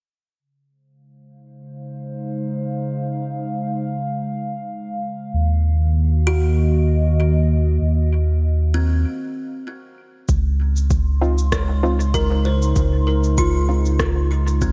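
Ambient dub with a deep, spacious mood, this excerpt from a longer piece opens on a warbling, lo-fi pad of dark sustained chords under a filter sweep, joined at 5.3 seconds by a round sub bass and then by bright, woody kalimba arpeggios trailing tape echo, before a brief break gives way at 10.3 seconds to an overdriven electronic kick and a cabasa and rim click soaked in dub echo, followed at 11.2 seconds by muted, chorused chord stabs.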